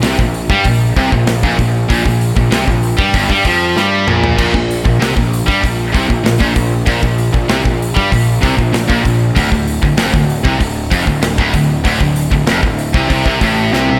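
Heavy metal in a straight four, relentless and aggressive from the first beat, cut from a longer piece. Two picked electric guitars drive the riff throughout. The high-gain one sits up front with a bright, distorted bite, while the tighter second guitar sits in the background. Underneath, a picked electric bass adds a growly, overdriven fuzz. A polished acoustic drum kit with a tight kick, medium-tuned snare, hi-hat, crash and toms sits up front with an airy small-room feel, and it breaks into fills around 3.8 seconds and again at 13.7 seconds. The harmony holds on a Bb power chord before shifting to D minor at 9.4 seconds, all wrapped in light reverb.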